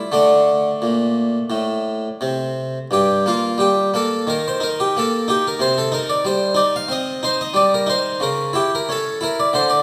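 Classical music in a baroque-style suite movement, this short passage cut from a longer piece is played on solo harpsichord in G minor, with a flowing, introspective mood. The tempo sits around 83-94 BPM in 4/4, but the rubato feel lets the pulse breathe and give. The harpsichord is up front, with a brilliant, airy, plucked tone in the French style, and its octave strings add body across a range from G2 to F5. The harmony moves from G minor at 2.9 seconds to C minor, then reaches a C# diminished seventh at 8.2 seconds. A generous recital-hall reverb, as in a church or concert hall, wraps the instrument in a reflective glow.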